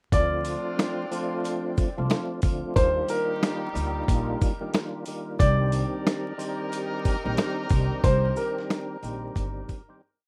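A swung, sparse boom-bap beat from a gritty, compressed sampler-style kit with a thumpy kick, medium-tuned snare and quarter-note hats drives this tough, dark hip-hop piece, while a woody pizzicato upright bass loops a deep line beneath chopped, lightly overdriven tonewheel organ chords turning through a slow rotary speaker, an intimate vintage upright piano repeats a short looping melody with audible action noise, a distant horn section holds swelling long notes, and jingly sleigh bells sit in the background on eighths, the whole piece carrying vinyl crackle in a rough home-demo mix that fades out from 8.0 seconds.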